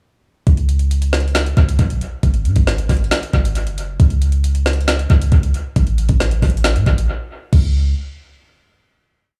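The recording is dry, with little reverb, a small-room ambience and a heavy wash of echo in the mix. This complete trap piece is melancholic and dark, moving at 136 BPM in 4/4 with a half-time feel. The electronic drum kit sits up front with a knocking kick, a woody snare, metallic hats and crash cymbal, playing a bouncy beat of sixteenth-note hats with fast rolls, all trailed by dub echo. Beneath it, a clean 808-style bass delivers deep, boomy sine tones with a fast attack and dark decay, holding long sub-bass notes that follow the kick and sliding in pitch between F#1 and A2. The hook runs from 0.5 seconds, broken briefly at 7.1 seconds, and the drums stop at 7.6 seconds while the bass rings on until 7.9 seconds, within a final note section that closes the piece at 9.3 seconds.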